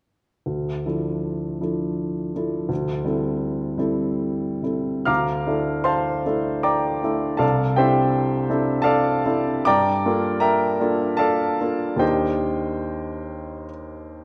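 Classical impressionist solo piano in a rubato 3/4, mysterious and wistful, with a clear, intimate baby grand sitting up front, its long sustain and audible action noise bathed in a wet concert hall reverb as rich extended chords drift from Dmadd9 through Gm9 to Ebmaj7 in this fragment of a longer piece.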